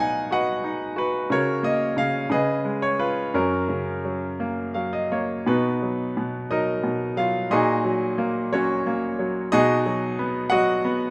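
A bright, brilliant grand piano sits up front and plays alone in this peaceful, lyrical classical fragment, unfolding in 6/8 with uneven, rubato beats and a natural tone caught by close, detailed microphones in light reverb, with a short piano fill from 4.4 to 5.5 seconds that leads into a new section whose richer seventh and added-note chords carry it to its close at 11.1 seconds.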